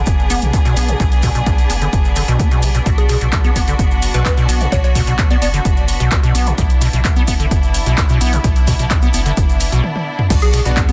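A straight 4/4 pulse at 129 BPM drives this raw, playful acid house clip, which opens on a B minor chord and is built on a punchy, tape-warm electronic kick, an analog drum machine with crash, handclaps, hi-hat and toms, and grainy maracas in the background. A squelchy, resonant square-wave acid bass riff with overdrive, lush chorus and delay undergoes a long filter sweep over a deep, round analog bass and sustained chords from a clear, biting string section, with those three parts pumping against the kick. A catchy, detuned unison lead with dub echo enters at 3.0 s, a break and drum fill arrive at 9.8 s, and a brilliant baby grand piano stab lands at 10.7 s, all in a dense, heavily limited mix with light reverb.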